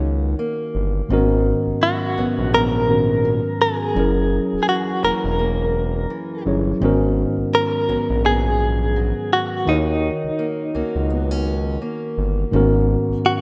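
Sensual and late-night, this contemporary R&B excerpt moves at an unhurried pace with a lazy swing on the sixteenths. A clean, direct-recorded electric guitar carries the melody up front, its compressed, picked tone shimmering with tremolo. A tine electric piano sits alongside it as accompaniment, clean and close, with the character of built-in speakers, while a smooth synth bass with a fast attack and sustained, evolving tone anchors the low end. Further back, a fingerpicked acoustic archtop guitar spins dark, boxy arpeggios with audible finger squeak, trailed by tape echo. Chords drift between D#m7, G#m11 and F#7, and a lush hall reverb gives the rough home-demo mix a roomy glow.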